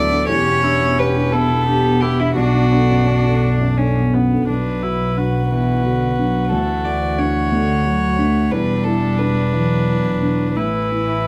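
A moderate studio room frames this melancholic neoclassical fragment for piano and strings, moving in 6/8 with rubato phrasing. A felt-muted upright piano, mellow and thick, carries the accompaniment over a dark double bass played sul tasto, while a pure viola fills the middle and a warm cello with light vibrato traces a second line. Up front, a floating, soft-attack violin sings the longing melody through a plate reverb as the harmony passes from Em7 to settle on Asus2 at 10.6 seconds.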